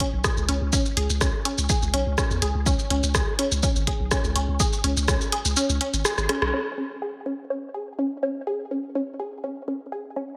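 A squelchy, resonant blip pluck opens this sparse, quirky minimal techno excerpt at 124 BPM, its detuned ring-modulated riff running through phaser, digital delay and sidechain pumping alongside a punchy analog kick and an up-front drum machine of low-passed hi-hat, rim click and shaker, all with a slight 16th-note swing. A deep sine sub bass with a pitch-drop attack pumps beneath them. The kick falls away at 5.2 seconds, a drum fill and band accent lead into the second section at 6.5 seconds, and from there the pluck carries on alone in light reverb.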